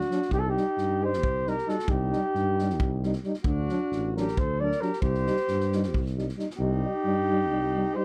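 A dark, distant flugelhorn carries the melody up front in this restless, virtuosic Balkan brass band excerpt, ranging from F#4 to D5 with a roomy, classical-style tone. Set in 7/8 at 268 BPM counted in eighths with a straight feel, the music sits in C dorian sharp4, tuned to A4 = 435 Hz, and moves over chords of Cm, D and back to Cm. An alto saxophone with vibrato and a punchy edge plays a second line, while a soft-attacked tuba anchors the bass prominently. Two euphoniums, one mellow and one warm with a smooth top, both with light vibrato, hold the accompaniment in the background. An acoustic drum kit played with bundle sticks adds a tight kick and a medium-tuned snare, set back in a studio room, and stops at 6.5 seconds, while the recording as a whole has little reverb.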